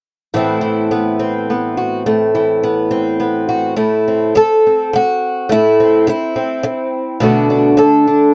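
A lone picked twelve-string acoustic guitar opens at 0.3 seconds, its dark, woody tone shimmering with octave-doubled strings as it moves through A dorian in a rubato 3/4 around 105 BPM. This melancholic, intimate folk fragment drifts from Amadd9 to Am at 3.8 seconds and settles on Bm7 near the close. The guitar sits up front in a dry, close 1970s-style studio sound with moderate booth ambience.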